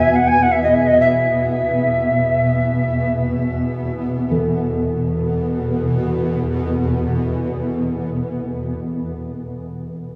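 Spacious and peaceful, this free-time meditative world piece, cut from a longer work, opens with a pure, woody cedar flute up front, singing a brief vibrato-laden line with a tongued chiff through shimmer reverb and diffuse delay before falling silent at 3.1 seconds. Beneath it, an ethereal pad drones low throughout, its octave-up shimmer and granular, wave-folded tone wrapped in chorus, while a bronze singing bowl rings on a single metallic pitch with slow beating, struck with a suede striker. The whole sits in a wet, boxy small room.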